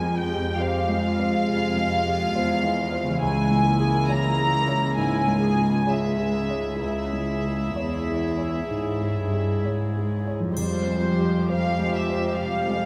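Cinematic, emotional film score for orchestra, moving and full of longing, unfolding in a rubato 4/4 at around 62-70 BPM and cut from a longer piece. A floating, sul tasto violin section carries the melody up front over a pure, soft-attack viola section, a warm grand piano with long sustain and a lush cello section with vibrato holding the bass, as the harmony shifts from Fmadd9 to Dbm and back. A bright, thumb-plucked concert harp joins with ringing arpeggios in the background at 3.0 s, a close, dry triangle enters briefly from 10.6 s, and a concert hall reverb bathes the whole ensemble.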